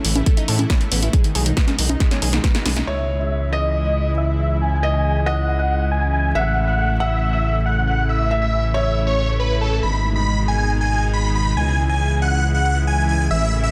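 A straight, driving 4/4 pulse opens this uplifting trance passage, with a punchy analog drum machine playing congas, hi-hat and snare, its hats and percussion pumping under sidechain, beside an up-front, layered electronic kick, before a drum fill and a full-band accent close the opening stretch. Underneath, a gritty, saturated sawtooth bass with oscillator sync and a resonant filter pluck sits up front throughout, while a lush, thick pad holds sustained chords with a slow attack, chorus and sidechain pumping, and a round, detuned analog pluck spins arpeggios through chorus and digital delay. At 2.9 seconds the drums and pluck fall away and a huge, euphoric supersaw lead takes the melody, bright and compressed, roughened by vintage 12-bit sampler grit and shaped by a sweeping low-pass filter, digital delay and pumping. A soft, felt-muted upright piano adds an intimate, mellow second line with its own delay until 9.7 seconds, as the harmony moves from C#m through A and G#m back to C#m. 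The soaring mood carries to a very quiet electronic riser at 13.5 seconds, all set in light reverb within a dense, heavily limited modern master.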